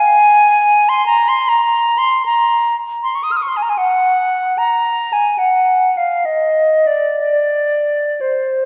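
A pure, straight-toned concert flute plays alone and up front from 0.0 to 8.7 seconds in this lyrical, serene classical fragment, its tongued line ranging from C5 to F6 in Ab mixolydian, moving freely in a rubato 3/4 between 58 and 80 BPM and ringing in a wet church reverb heard from further back in the room.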